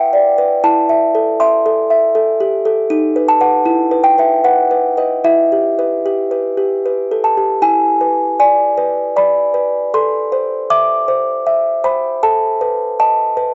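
In a 3/4 with a rubato feel, this classical lullaby for music box drifts along at roughly 74-81 BPM, cut from a longer piece. The music box plays alone throughout, its delicate, tinkling plucked tones sounding small and mellow, set up front in the mix and ranging from D#4 to D6. Rooted in E minor, the harmony moves through Em, Am/E and B7/D# in the opening section, then shifts at 7.6 seconds to a second section built on E7, Am and B7/A that lends an eerie, unsettled tinge to the wistful mood. The instrument sits in a short, wet booth ambience, and the home cassette recording rolls off the top end, giving the sound a soft, hazy, faded character.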